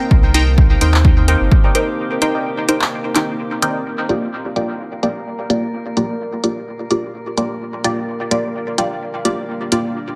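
Dub techno, meditative and cavernous, opens on a deep, moody pad holding sustained chords with chorus and its own reverb, shadowed by a glassy texture of drifting overtones in the background, both breathing with sidechain pumping over a shift from Cm7 to Gm7 at 3.9 seconds. A punchy, tape-warm kick sits up front with a clean, smooth sine sub bass beneath it, both only until about 1.6 seconds. Meanwhile a muted, detuned sawtooth-and-square chord stab with phaser and dub echo carries on alongside an analog drum machine of handclaps and low-pass filtered hats, with a very quiet second stab riff slipping in between 1.6 and 3.8 seconds, all inside a moderate echo-chamber reverb.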